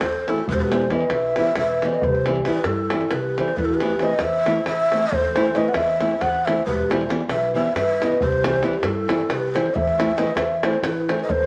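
Balkan folk in a wedding-band style, this restless, bittersweet excerpt moves in a straight 7/8 at 272 BPM (eighths) in A minor, with an up-front, breathy low ney carrying the melody with chiff and unsteady vibrato over a mellow soft-mallet vibraphone second line, fingerpicked nylon-string guitar entering at 0.3 s, a woody, thumpy pizzicato upright bass and a tight davul, as the chords cycle through Em, C and Am in a wet studio reverb dusted with vinyl crackle.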